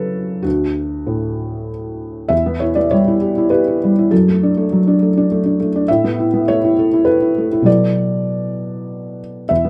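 A felt-muted upright piano plays alone, mellow and up front with audible action noise under light reverb, in this intimate, melancholic neoclassical minimalist piece in E dorian, moving rubato in 3/4 at 95-103 BPM through D, Em, D/F#, Asus2 and Bm7 across 9.7 seconds cut from a longer work.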